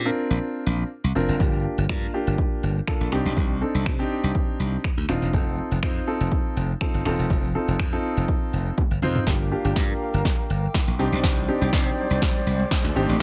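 Dance-pop at 122 BPM in a euphoric, carefree mood, this excerpt opens with a glassy, up-front slap bass and a concert grand piano with deep bass and short sustain, both pumping to the sidechain over Bbadd9, Gm7, Cmadd9 and F7, before a punchy, tape-warm analog drum machine of kick, snare, hi-hat, toms and finger snaps enters at 1.4 seconds, and after a drum fill a build-up begins at 9.3 seconds, where a breathy, close-miked small flute group adds expressive sustained chords with vibrato and a very quiet riser enters at 11.6 seconds, all within digital ambience.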